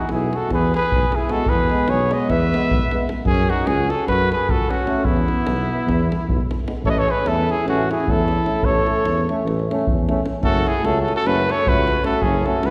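Heard from further back in a reverberant recital hall, this excerpt of Balkan brass band folk has an exuberant, wild energy, driving along at 301 BPM in eighths in a straight 9/8. Two mellow trumpets open together at 0.0 s: one sits up front carrying the melody, and the other plays a close-miked, soft-attacked second line beneath it. A deep, close acoustic davul drives the percussion from the start, and the tuba enters at 0.1 s with a smooth-topped bass line. At 1.3 s a clear euphonium and a distant, roomy trombone join in the background as accompaniment. The trumpets, euphonium and tuba all carry a light vibrato, and every brass part is played in a classical style. The harmony moves from E through F#m and E5, then settles into a second section from 6.8 s on A before returning to F#m.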